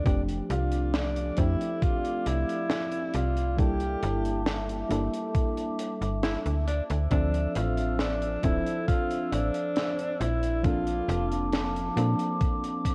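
A breathy, up-front alto saxophone sings a soft, scooped melody in this woozy, dreamy vaporwave excerpt, drifting over a mellow chorused FM electric piano, a warbling lo-fi pad with sampler grit, a snappy slap-like FM bass, a thumpy electronic kick and a crisp fusion kit with a high-tuned snare, all steeped in the wobble of worn cassette tape as the chords move from F6 through C13 and Dm9 to Bbmaj7.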